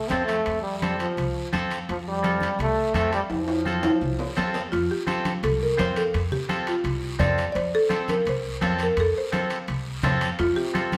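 Latin cumbia, festive and joyful, in which a clear trombone with vibrato solos up front at the start over bright, picked clean electric guitar, woody pizzicato upright bass, thick-skinned congas, a raspy guiro and ringing timbales set in the background, until a drum fill hands the melody to a buzzing, close-miked marimba at 4.7 seconds, the band sounding live together in a wet stone room.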